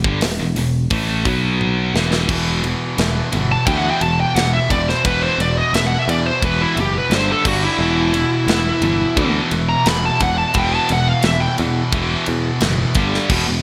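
Dark and epic, this heavy metal excerpt moves at 87 BPM in a straight 4/4, rooted in E minor and cut from a longer piece. Two distorted electric guitars, one compressed and one scooped with high gain, sit in the background playing riffs from the start, over a growly, direct picked electric bass and a tight metal drum kit with a tight kick, medium-tuned snare, rolled-off top and gated reverb. A drum fill from 1.6 to 2.3 seconds leads into the second section, where a double-tracked heavy high-gain guitar joins the riffing. At 3.5 seconds an up-front high-gain lead guitar enters with a picked, distorted melody in its upper register, carrying the solo until 11.5 seconds. The harmony moves from E minor through B5 and E5 power chords to G5, and the bright, 1980s-style digital production adds a light studio reverb.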